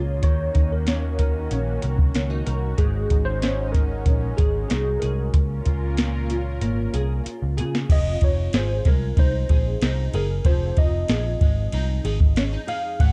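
An up-front soft vintage rhythm box with a deep kick, crisp snare, metallic hats and 12-bit sampler grit drives this wistful, hazy indie-pop and bedroom-pop fragment at 94 BPM, entering at 0.2 seconds over a round, punchy, foam-muted picked electric bass, a fingerpicked flamenco guitar with ensemble chorus and vibrato, a clean tine electric piano carrying the melody through analog chorus, and a lush, airy, detuned sawtooth unison pad with chorus and phaser that holds sustained chords until 7.9 seconds, at the close of a drum fill that begins at 6.6 seconds, set in light reverb within a dark, warm production.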